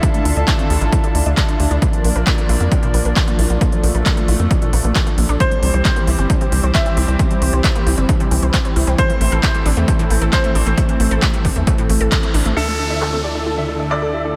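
Uplifting trance at 134 BPM in D minor, euphoric and emotional, this short cut opens with a lush, airy unison pad holding chords, a detuned pluck arpeggio carrying a filter sweep and analog delay, a punchy overdriven kick, crisp hats with handclaps and crash, and a tight sawtooth sequencer bass driving underneath. The pad, pluck, bass, hats and crash pump with sidechain through a dreamy cathedral reverb. A bright, brilliant grand piano adds a second line with delay from 5.4 s, moving through C and Am. At 12.6 s the harmony returns to Dmadd9 as a huge, thick supersaw lead enters with vibrato alongside a downlifter, while a filter sweep moves across the pad.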